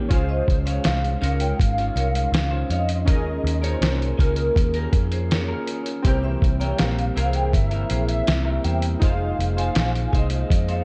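Indie and bedroom pop at 81 BPM, sunny and dreamy, this short excerpt moves through Dbmaj7, Eb7sus4, C7 and Fm7 with a dark, warm production. Up front sit a muffled, pitched-down sampler-style kit with a thumpy kick and a round, foam-muted picked bass, while a slightly broken-up electric guitar with subtle chorus and vibrato shares accompaniment with detuned sawtooth keys carrying a filter sweep and cassette-tape coloring. A wave-folded, warbling lead sings the melody over a ringing vibraphone second line with analog delay, and from 1.0 s a slow-attack, tape-like square-wave pad with built-in reverb drifts in the background.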